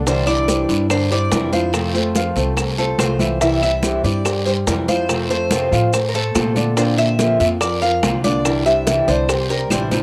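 Sunny and warm, this excerpt of Cuban son and guajira moves at 143 BPM in a straight 4/4, with a bright, metallic Cuban tres carrying the melody over a dark, boxy parlour steel-string guitar fingerpicking the accompaniment and a mellow, vintage grand piano rolling short-sustained arpeggios, those three parts carrying a cassette-tape colour. A thumpy, woody upright bass on gut strings sits up front, while congas, tight high-tuned bongos and claves stay in the background alongside raspy guiro and grainy maracas, all in a modest booth ambience of a home cassette recording. The harmony moves through Cadd9, F, C and Bbadd9, and a drum fill closes the passage at 9.5 seconds.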